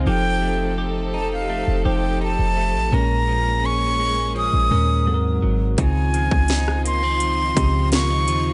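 A straight 4/4 pulse at 84 BPM carries this moody, late-night contemporary R&B fragment in Bb dorian, where a deep, boomy 808-style bass and a bell-like tine electric piano support a breathy, close-miked concert flute melody, with sustained chords from a smooth chamber string section and picked arpeggios from a clean, direct-recorded electric guitar with analog chorus in the background, before an overdriven trap drum kit with a hard-clipped kick, sharp snare and metallic hats arrives up front at 5.8 seconds, the whole set in a digital ambience.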